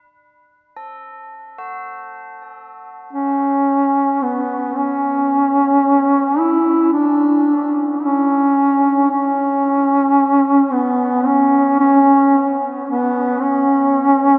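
A cathedral reverb with a long 5.5-second tail surrounds this unsettling, desolate ambient fragment in F# minor, moving at a slow 55 BPM in 4/4. Soft, solemn tubular bells ring out padded-hammer arpeggios with delay in the background from the start until 5.0 seconds, and a mellow duduk enters up front at 3.1 seconds. The duduk carries a folk-style melody with vibrato and scooped notes, sounding distant and roomy through its own delay, until the cut at 14.4 seconds.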